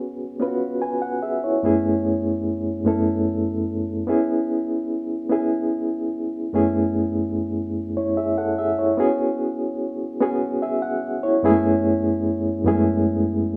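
A reedy, clean electric piano with a fast tremolo plays alone and up front through this yearning, late-night R&B excerpt in a straight 6/8, moving through C#7sus4, F#m11 and C#m7 chords in a light-reverb room before shifting into a new section at 9.0 seconds.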